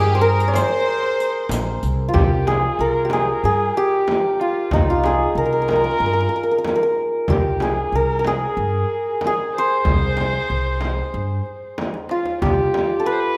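Melancholic and longing, this Persian modal ensemble piece, cut from a longer work, moves at 93 BPM in a straight 4/4 and is set in dastgah shur on C. Up front, a shimmering, ringing hammered santur carries the melody throughout, with a single bowed kamancheh beneath it as a second line, earthy and smooth on top with light vibrato and portamento. A rich chamber violin section, biting yet bowed with light vibrato, shares that second line only briefly at the opening and drops out by 1.8 seconds. A woody, growly pizzicato upright bass with steel strings anchors the low end up front. A very quiet, tight tombak and a distant frame drum played with hard hands keep the pulse, while a close, dry riq with dark jingles sits in the background for the first couple of seconds. A drum fill at 11.8 seconds leads toward the close, and the ensemble sits in a moderate recital hall reverb.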